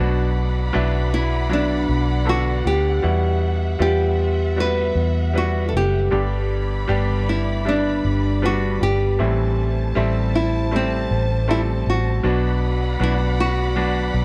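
Hopeful and emotional, this unhurried pop piece moves at 78 BPM in a straight 4/4, cut from a longer work and running about 14.2 seconds. A small, fingerpicked nylon-string guitar carries the melody in a modest range, its acoustic tone warm. A bright grand piano accompanies with a brilliant, polished sound and short sustain, sitting up front alongside a vintage muted fingered electric bass that is dark, round and punchy, the most prominent part in the mix. Behind them, a studio string section holds sustained chords, bowed with vibrato and portamento for an expressive, smooth-topped ensemble sound. The harmony moves from Bm through Emadd9, G and Am7 before returning to Bm at 12.2 seconds, all captured in a dry, close studio sound with a 1970s character.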